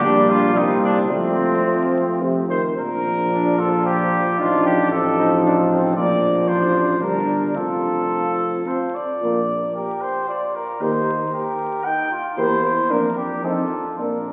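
In a rubato triple metre, this triumphant, stately classical brass quintet excerpt opens with a brief phrase before settling into its main passage at 2.8 s. A punchy, up-front trumpet carries the melody, while a warm, distant flugelhorn supplies a second line. A French horn with light vibrato and a mellow, soft-edged trombone fill in the accompaniment over a dark, close-miked tuba bass. The whole ensemble sits in a wet concert hall and is heard through the crackle of a very old 78 rpm record.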